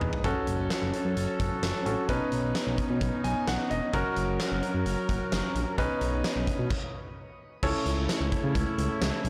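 The recording sounds blown-out and overdriven, wrapped in a lush hall reverb. This is a driving, melancholic synth-pop passage at 130 BPM in a straight 4/4, cut from a longer piece and moving through F#m, Badd9, F# and Badd9. A huge, boomy-kicked arena drum kit with a fat snare sits up front and opens on a fill. A smooth, dark synth bass with a sawtooth and square-wave edge and a touch of ring modulation holds the low end. A clear, intimate concert grand piano, with audible action noise and long sustain under shimmer reverb, plays accompaniment and takes a fill at 3.0 seconds, while a warm classical-style brass ensemble joins almost at once with background chords, also bathed in shimmer. After a stop at 6.7 seconds, a new section arrives at 7.6 seconds on an A/C# chord.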